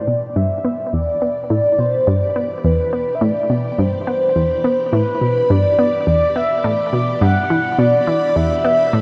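Steeped in a lush hall reverb, this expansive, cosmic fragment of sequencer-driven space music pairs an up-front, horn-like synth lead, mellow and warbling with vibrato, against a round, nasal analog pluck riff in the low register, while a swirling, phased string machine fades in on sustained Em7 chords and a bubbling, resonant stepped-filter texture drifts in from the background at 0.7 seconds.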